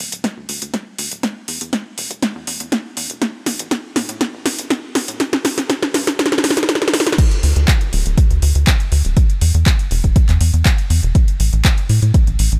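Uplifting and hopeful, this progressive house excerpt moves at 121 BPM in a straight 4/4 and is cut from a longer piece. A tight sequencer bass runs throughout from D1 to A2, its sawtooth and square-wave tone carrying a fast-attack filter pluck with a moving notch, punchy and driving yet mellow as it decays, shaped by sidechain pumping and a high-pass filter. A deep house drum kit of crash cymbal, handclaps, hi-hat and snare sits up front with overdrive and small room reverb, its punchy snare and metallic hats giving edge, while sidechain pumping breathes through the hats and cymbals. An overdriven electronic kick drum, deep and layered, lands from 0.2 seconds, high-passed and set in the same small room. The first 7.2 seconds form a build-up carried by a drum fill, and the drop arrives at 7.2 seconds, with the kick ending at 12.2 seconds in a digital ambience.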